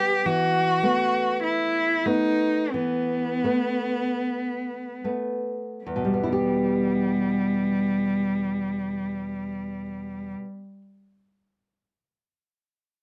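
A rich, focused bowed cello with vibrato sings a yearning, melancholic melody up front in this rubato romantic duo in E minor at 34-55 BPM, slowing through its opening 5.9 seconds over dark, fingerpicked classical nylon-string guitar, with a close, detailed sound and light reverb in an excerpt cut from a longer piece.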